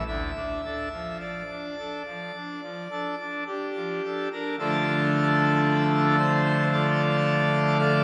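Rubato in a slow 4/4 at 52-57 BPM, this grave, solemn classical chorale-style fragment in D minor, tuned to A4 = 437 Hz, sets a solo pipe organ on full organ with brilliant mixtures and romantic voicing up front, its majestic sound spanning D2 to F5 through 8.0 seconds as it rings into a wet church reverb with a 3.4-second decay.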